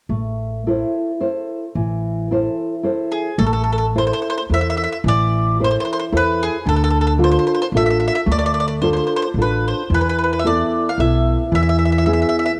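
This homemade cassette recording has a light reverb, and it is cut from a longer piece. It is a wistful, romantic Italian folk serenade in 3/4 time. From 0.1 seconds, a full-bodied nylon-string guitar plays dark, thumb-plucked accompaniment, with finger squeaks audible. Beside it, a thumpy pizzicato upright bass with steel strings anchors the low end. At 3.1 seconds a picked mandolin enters up front with the melody, its double strings sounding woody and carrying a cassette-tape tint. The harmony moves from A minor to D minor, then through E suspended fourth to E, where the excerpt is cut.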